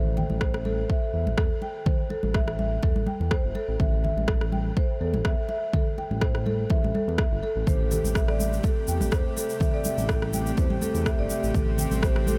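A deep, overdriven electronic kick drum sits up front in this spiritual, warm afro house excerpt, entering at 0.4 seconds together with a layered, overdriven electronic rim click. Beneath them, a smooth, nasal synth bass built from detuned sawtooth, square and triangle waves plays sustained notes with a fast attack and vibrato, moving with sidechain pumping. A mellow marimba played with soft mallets on rosewood bars spins woody, round arpeggios over an Am7 chord, its airy tone carried by delay and the same pumping. Bright, high-tuned congas struck with hard hands sit in the background, and the groove has a light swing. At 7.7 seconds a rich chamber string section enters with bowed, held chords, earthy and close with light vibrato and a pumping motion, alongside a grainy, dry tube shaker, while the recording carries light reverb and small room ambience.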